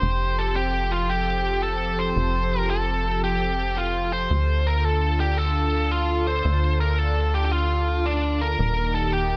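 Synthwave at 112 BPM in a straight 4/4, this brief cinematic and moody fragment is cut from a longer piece and tuned slightly low to A4 = 438 Hz. A tight sequencer bass sits up front from the opening second, its punchy sawtooth and square-wave tone given a filter pluck, a fast attack and a ring-modulated edge that decays into a mellow, driving pulse between Eb1 and D2. Above it, a phased analog pad holds sustained chords from D3 to A4, its detuned sawtooth voice swirling and warbling with phaser and chorus and a slow attack that lends it a vintage, evolving shimmer. A biting lead guitar carries the melody between D4 and C5, bright and overdriven, picked and placed up front, with delay trailing its notes. All three parts play throughout the 9.4 seconds over a harmonic path from Fadd9 to Dm at 4.3 s and Eb at 8.6 s, all set in a light reverb.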